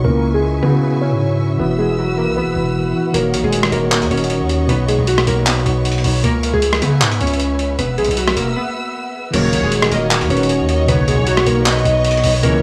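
This hip hop and trap excerpt, cut from a longer piece, moves at 155 BPM with a half-time feel in Eb phrygian, carrying a melancholic, brooding mood. Glassy digital keys carry the melody throughout, shaped by chorus, tape echo and a filter sweep over the opening 3.1 seconds. A mellow tine electric piano accompanies them, briefly dropping out before returning at 9.3 seconds. Above them, a lush symphonic string section holds distant sustained chords with vibrato and portamento, while a heavy, aggressive distorted 808-style bass anchors the low end. The gritty, overdriven sampler-style drum kit enters at 3.1 seconds, pitched down and up front, with crash cymbal, handclaps, hi-hat and rim click. After a short break, the closing section brings in a dark, woody studio violin section playing a second line sul tasto, plus fat, detuned analog synth brass stabs in the background, all in a dry, small-room sound.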